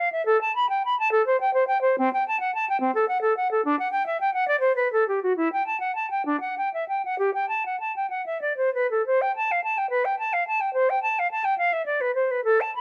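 A silver concert flute opens alone, its pure, metallic tone carrying vibrato and tongued notes across a range from C4 to B5 in a flowing, dance-like baroque-style fantasia. The lilting 6/8 pulse moves with free rubato at about 61-73 BPM, with the music settled in G major before shifting to C major at 9.0 s. Light reverb and a dark production keep the solo line up front until this short cut from a longer piece ends at 12.8 s.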